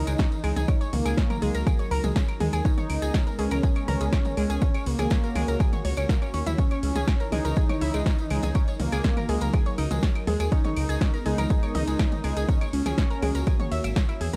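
A dry, gritty hardware recording of dark, driving melodic techno at 122 BPM in C# dorian, this excerpt rides an overdriven, up-front electronic kick and a punchy deep house kit with metallic hats, backed by a close, jingly tambourine, while a menacing detuned saw bass with a filter swell, a round, warbling analog pluck arpeggiating through tape echo, a thick, bold unison lead with vibrato that drops out at 13.6 s, and a moody sub-octave pad all pump with sidechain over chords moving from C#madd9 through D#m, G#madd9 and F# above C#.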